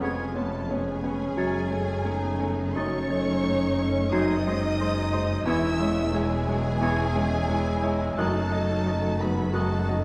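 A clear, up-front grand piano carries the melody from the opening moment of this brooding, passionate classical excerpt, its rubato line joined high above by a woody, soft-attacked violin section. Around them, a lush second violin section, a pure silver concert flute, an oboe and a very quiet clarinet play second lines, while a distant viola section and a bassoon fill in the accompaniment, a mellow French horn section sustains chords, and a focused cello section and a rich double bass section with portamento anchor the bass. The ensemble sits in a wet scoring-stage reverb with a dark, warm production.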